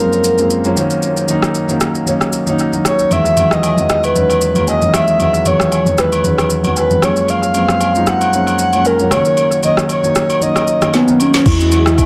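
An echo-heavy, lightly reverberant mix opens this relaxed amapiano excerpt at 115 BPM in E lydian, where a breathy, warbling flute-like synth lead carries the melody with chorus and dub echo over a warm, up-front concert grand piano and a smooth electronic R&B kit with a soft kick, woody snare, rim click, shaker and crash. Distant agogo bells and woodblock join at 3.1 seconds, and a drum fill at 10.9 seconds leads to 11.5 seconds, where a deep, round log drum bass and mellow, phased string-machine cellos arrive in the background as the piano stops. The harmony moves gently between F#maj9, D#m7 and Emaj9 under a loose sixteenth-note swing.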